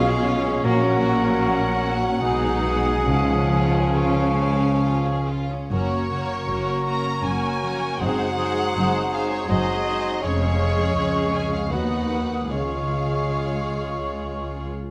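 A rich, lush first violin section carries the lyrical melody of this slow, romantic orchestral movement in three, its bowed line expressive, softly attacked and full of vibrato, with a rubato feel that lets the phrasing breathe. Beneath it sits a warm, gently glowing blend of background voices: a clear second violin section, an airy flute section with crisp attacks and lifted highs, a mellow, distant cor anglais and a soft-edged clarinet, each adding its own second line. A vintage-toned bassoon and a close, smooth viola section fill in the accompaniment, while a tight French horn section holds sustained chords until about 12.8 seconds. A ringing, fingerpicked concert harp spreads arpeggios across a broad range, and focused cellos with bowed double basses anchor the bass. The ensemble sounds in a moderate recital hall reverb, and this passage, cut from a longer piece, moves from its opening phrase into a new section at 5.7 seconds.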